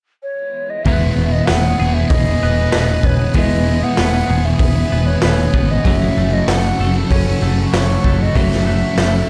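Shoegaze-tinged dream pop rock in E major at 96 BPM, this dreamy, wistful excerpt opens with a mellow, hollow flute carrying the melody from 0.2 seconds, airy with vibrato, a chiffy attack and a digital delay trailing its notes. At 0.9 seconds the band arrives together: a thick fuzz guitar plays a dark, distorted riff thickened by analog chorus, while an overdriven electric guitar adds a second riff in the background through reverse reverb. A bright, twangy twelve-string electric guitar spins clean arpeggios under lush chorus and delay, and a growling picked bass, round and overdriven, anchors the low end. The raw garage drum kit sits up front with a boomy kick, medium-tuned snare and hi-hat, its small pumping room sounding saturated and gritty with a rolled-off top. From 1.3 seconds an evolving wavetable pad with a slow attack morphs behind everything through phaser and its own reverb, as the harmony moves from Emaj7 to F#m7 at 5.9 seconds under a light studio reverb.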